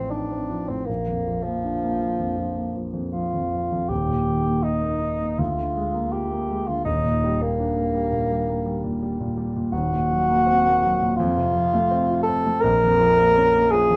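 The pulse is uneven and elastic: a rubato 4/4 at around 82 BPM that bends with the phrasing. This classical, romantic duo for bassoon and grand piano carries an elegiac, solemn mood through 14 seconds cut from a longer piece. The bassoon sings the melody up front with a mellow, soft-attacked tone, light vibrato and a roomy presence. Beneath it, the dark concert grand plays the accompaniment, with deep bass anchoring the harmony. The chords open on F7 over A and move through Bb, Eb, Ebmaj7 and a half-diminished chord over Eb to F, then turn to Bb minor at 12.6 seconds. Light reverb frames the pair, and lossy compression artefacts tint the sound.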